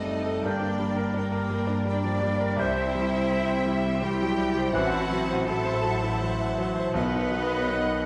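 A bright, brilliant concert grand piano sits up front carrying the melody, its deep bass and natural tone leading this passionate, lyrical romantic movement for piano and orchestra, heard in a rubato triple metre in a brief cut from a longer piece. Behind it, a clear violin section also carries the melody at a distance while a second violin section adds a smooth, even line, joined by an airy flute group and, from 0.5 seconds, a roomy oboe and a very quiet clarinet. Rich, focused violas fill in the accompaniment alongside a very quiet bassoon, while a mellow French horn section holds sustained chords in the background. The low end comes from intense, vibrato-laden cellos and a lush double bass section, and hard-mallet timpani with a close, dry, articulate attack enter softly at 6.9 seconds. The harmony moves from Gm through C and F#m7b5/A to B, all set in a wet recital hall reverb with a layer of vinyl crackle.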